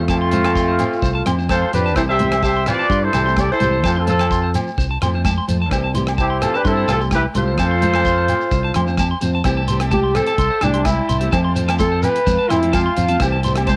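A straight four-beat groove comes from a damped 70s drum kit with a tight kick, rim clicks and hi-hat, while ringing, high-tuned congas, agogo bells and a grainy shekere sit in the background and a round, punchy fingered electric bass drives up front. In this carefree, sunny highlife guitar band clip from a longer piece, a dark, tight horn section carries the melody with light vibrato and takes a solo from 9.5 seconds, a clear trumpet plays a second line until 9.0 seconds, and a twangy, slightly broken-up electric guitar picks bright arpeggios through analog delay over a fingerpicked nylon-string guitar with audible finger squeak. A very quiet, gritty overdriven tonewheel organ adds sustained chords from 9.4 seconds as the harmony alternates between F and C6, all with the character of a cassette home recording in a small room.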